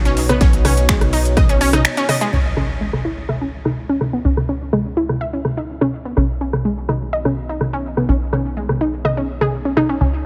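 This dark, cinematic melodic techno excerpt at 125 BPM opens on a moody, detuned analog pad holding chords in the background and a punchy, funky plucky analog bass, both pumping with the sidechain, while a lush, warbling unison pluck spins arpeggios up front through dub echo. A techno drum kit of finger snaps, smooth hats, rim clicks and toms sits overdriven and forward, joined briefly by a heavy, overdriven electronic kick and a very quiet, gritty breakbeat sampler-style kit that stops at 2.2 s. An electronic impact lands at 2.3 s as the harmony moves from Badd9 to C#m, then returns to Badd9 at 6.2 s.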